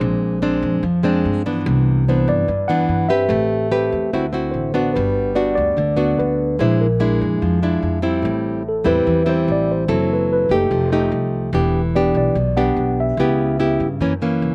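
Up front in the mix, a fingerpicked nylon-string guitar carries the accompaniment in this intimate, melancholic bossa nova fragment, its classical, warm tone touched by a slapback echo. A mellow tine electric piano sings the melody in a clean, speaker-colored voice with the same short echo, falling silent at 13.8 seconds while the guitar and bass play on. Beneath them, a pizzicato upright bass on gut strings gives a woody, thumpy low end. The tempo sits at 146 BPM in a straight 4/4, and the harmony drifts through rich extended chords such as Cmaj9, Am9, A#7#11 and F#m7b5 before landing on F#7. The sound is dry and open-air, taken from a longer piece and lasting about 14.5 seconds.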